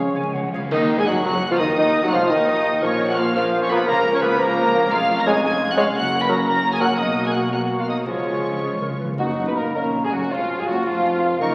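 A rubato 6/8 pulse in dotted quarters, moving between 102 and 118 BPM, drives this fast, dramatic romantic movement for symphony orchestra, cheerful and spirited in mood, starting in E-flat minor and turning toward F-sharp major from 4.9 seconds. A chamber violin section carries the melody with a rich, smooth vibrato, while a very quiet, lush symphonic violin section, an airy, hollow flute section, a distant cor anglais and a mellow clarinet weave second lines alongside it, the clarinet dropping out at 9.1 seconds. A clear, focused viola section and a dark bassoon supply accompaniment, a punchy French horn section holds sustained chords in the background, and a trombone section sounds only briefly at the very start. The bass rests on an intense double bass section and a close, very quiet cello section. Timpani open with a fill and return at 8.1 seconds, and a dry accent of dark clash cymbals and concert bass drum lands at 0.7 seconds, all heard through a wet scoring-stage reverb and the crackle of a very old 78 rpm record in this short cut from a longer piece.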